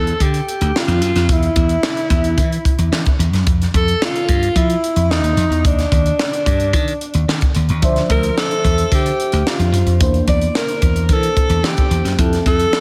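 A straight 4/4 groove at 110 BPM drives this slick, nocturnal slice of polished 1980s jazz-funk pop in D minor, cut from a longer piece. A tight funk drum kit sits up front with hi-hat, a tight kick and a high-tuned snare in a small room, while a punchy slap bass, bright and direct, anchors the low end from the start. Over them, a breathy alto saxophone carries the melody, close-miked and intimate, its whispered tone shaped by vibrato, scooped notes and a slapback echo. At 7.8 seconds a vintage FM electric piano joins in the background with glassy, bell-like chords that decay, warbling through a lush chorus and its own slapback echo. The harmony moves from Dmadd9 through Fmaj7 and Ebmaj7 to Dm9 and C9/E, all set in light reverb and small room ambience.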